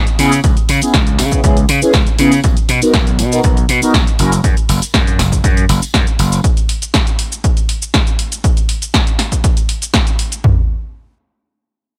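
Funky and sunny, this excerpt from a longer filtered disco house track moves at 120 BPM in a straight 4/4, in B major. A gritty, overdriven slap bass sits up front with a bright, growly tone and sidechain pumping. A mellow, brassy sawtooth synth plays soft-attack sustained chords from C#m7 to Bmaj7, treated with chorus, phaser, a filter sweep and the same pumping, before dropping out at 4.3 seconds. An analog drum machine drives the groove with a punchy kick and toms up front, alongside a snare, hi-hat and shaker, all re-recorded in a large room. In the background, a compressed, saturated tambourine blends with maracas and group handclaps until 6.4 seconds, when the bass also stops. The drums carry on alone to 10.6 seconds in a roomy digital ambience.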